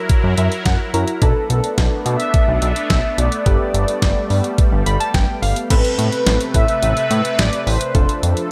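Round analog keys and an evolving, resonant pad, both bathed in chorus and shimmer reverb, open this nocturnal, driving synth-pop excerpt at 107 BPM in A minor. They are joined at once by an up-front, tape-warm detuned 8-bit drum machine with a thumpy kick and medium-tuned snare, and by a fat, nasal, saturated analog bass. From 1.2 seconds a dark, brassy synth lead with vibrato, delay and shimmer reverb carries the melody over a light sheen of room reverb.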